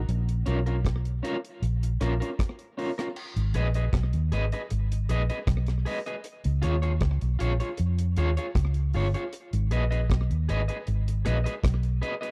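Roots reggae in a straight four, serious and meditative, this short cut from a longer piece sits in a dry, close room with a 1970s studio character. A vintage electric bass, fingered and foam-muted, opens at 0.0 seconds with a dark, round, amped tone placed up front, holding the low register. The acoustic drum kit joins at 0.1 seconds, smooth and tight at the kick, with a rolled-off top on its crash, hi-hat and rim click, and a slapback echo trailing the hits. From 0.5 seconds an electric guitar at the edge of break-up adds picked, twangy accompaniment, slightly broken-up and coloured by tremolo and tape echo, sitting lower in the blend than the bass. The harmony moves from B-flat minor to A-flat minor, D-flat and back to A-flat minor, with a new section arriving as the first change lands.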